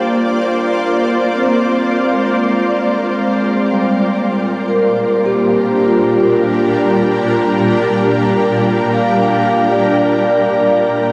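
Ambient in free time, this peaceful, serene passage cut from a longer piece floats on a bright, up-front shimmering pad whose detuned, slow-attack chords carry an octave-up shimmer, chorus and built-in reverb, moving from Bb7 to Gm/Bb at 3.9 seconds. A vibraphone played with medium mallets rings out metallic arpeggios through delay and a slow motor vibrato. A very quiet glassy texture of drifting overtones hovers until 10.2 seconds, all of it bathed in a wet shimmer reverb with a 9.1-second decay.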